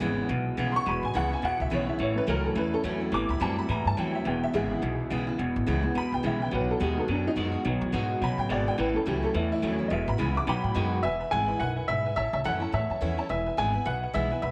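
Soaked in wet spring reverb, this rollicking, retro rockabilly excerpt swings at 212 BPM in E major: a jangly, detuned honky-tonk upright piano solos over a full-bodied, picked dreadnought acoustic guitar, a thumpy, woody pizzicato upright bass on gut strings, and a twangy, slightly broken-up electric guitar riff from a small old amp, until the riff drops out at 11.0 s and a warm, up-front upright piano takes the melody.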